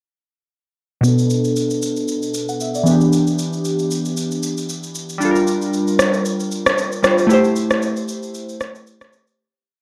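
Amapiano at 115 BPM in B phrygian, hypnotic and soulful, with a lightly swung sixteenth-note feel running through a single breakdown from 1.0 to 9.4 seconds. Glassy digital keys carry the accompaniment up front, their airy, sine-like tone touched with a noise layer, fast attacks that decay, and chorus, while a filter sweep moves across them for the whole passage. They push the chord rhythm in spread voicings, adding grace notes and short fills as the harmony moves from Bm7 to Em7, Gm7 and Am7. An electronic shaker and rim click, also up front and carrying a tape-warm, roomy character, hold a steady amapiano groove with a soft kick under syncopated rim hits. A moderate digital room reverb surrounds the music, worn cassette tape adds a warbling pitch drift throughout, and the piece fades out from 7.3 seconds.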